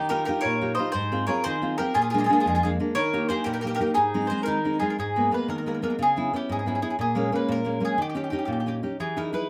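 A lead mandolin, a bowl-back mandolin and a fingerpicked nylon-string guitar begin together in this passionate, wistful Italian folk serenade in a straight 6/8. The lead mandolin sits up front with a woody, picked double-string tone, carrying the melody above the other parts, while the bowl-back mandolin adds a brighter picked second line just beneath it. The guitar, also up front, supplies a warm, deep classical accompaniment that reaches down into the bass. At 5.0 seconds the bowl-back mandolin stops and the harmony turns to a minor colour for the second section, leaving the lead mandolin and guitar as a duo through to 9.5 seconds. A short, wet studio reverb surrounds the instruments, and the recording is cut from a longer piece.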